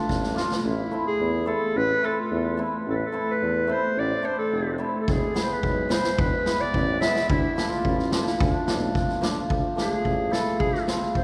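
Klezmer at 108 BPM in 2/4, festive and soulful, cut from a longer piece and set in D dorian with a raised fourth. The clarinet carries the melody from the first moment, a classical-style voice placed up front yet sounding distant and roomy, and it takes a solo from 9.5 seconds to the end. Beneath it a vintage tuba with vibrato holds the bass line in a jazz manner, while a bright, hammered cimbalom rings and shimmers through the accompaniment. A street-band drum kit opens with a short fill of kick and snare, drops out, then returns at 5.1 seconds with a boomy kick, a medium-tuned snare and a rolled-off top. The harmony moves from D minor through A minor and E before settling back on D minor, all bathed in the long, wet reverb of a church.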